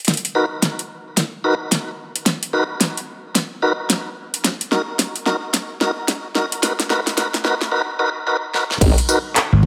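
Glitch hop at 110 BPM with a swung 16th-note feel, playful and swaggering, where a tape-warm pop kit with a fat snare, metallic hats, handclaps, rim clicks and tambourine rides over a punchy layered electronic kick, lightly overdriven tonewheel organ stabs with key click and fast rotary speaker pump through delay across a build-up of drum fills moving from D#m through F# and Bmaj7, and then a chorused formant-sweep wobble bass blurts a brief G#1 at 8.8 seconds on G#m9 before a growly, amped slap bass lands at 9.5 seconds, all inside a lush hall reverb, cut from a longer piece.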